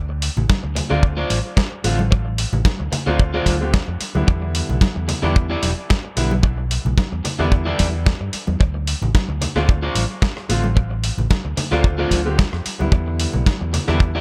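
A light studio reverb and heavy dub echo wash over this groovy, cosmic nu-disco fragment at 111 BPM in D dorian, where a tight, dry kick sits up front, a bright, envelope-filtered fingered bass pumps with tube saturation, a gritty, overdriven sampler-style kit of hi-hat, rim click and snare rides alongside ringing congas in the background, a slightly broken-up picked guitar riff shimmers through lush chorus, and an intimate grand piano with audible action noise and long sustain enters at 0.9 seconds, all circling between Dm7 and Em7.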